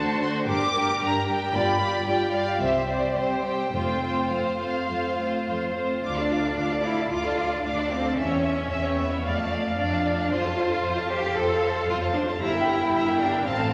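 A wet concert-hall reverb surrounds this spirited, lively fragment of a quick classical-period movement for string orchestra at 112 BPM in 4/4, played with a rubato feel, moving from F major into D minor at 6.0 seconds. Distant, soft-attacked violins carry the melody above a smooth, up-front second violin line, while violas with expressive portamento supply the accompaniment. Focused cellos ground the bass from the start, joined at 0.5 seconds by double basses with a smooth top, all bowed with vibrato and cut from a longer piece.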